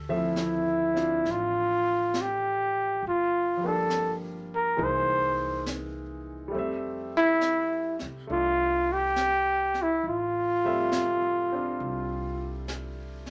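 A slow swung 4/4 at 68 BPM sets a romantic, late-night jazz ballad in F major, cut from a longer piece and moving through Dm9, Gm7, C7alt and Fmaj9. A dark, breathy trumpet sings the melody up front with scooped notes and a smooth top, over clear grand piano accompaniment, a woody, thumpy pizzicato upright bass on gut strings, and a brush drum kit with brushed snare, high-tuned snare drum and hi-hat. The trumpet stops at 12.7 seconds while the others carry on, and the whole band sits in a wet small room.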